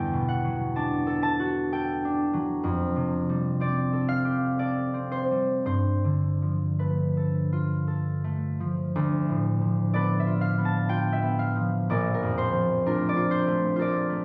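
In a rubato 3/4 that drifts between 53 and 66 BPM, a solo concert harp plays a gentle, wistful classical passage in D dorian, cut from a longer piece. Its thumb-plucked, ringing tone sits up front and spans Bb1 to B5, moving through Em11, F69 and G9 before a second section at 8.9 seconds turns to Dm6 and Bbmaj7. The harp carries a moderate recital-hall reverb with an added club reverb and compression, and it is heard as if captured on a phone in the room.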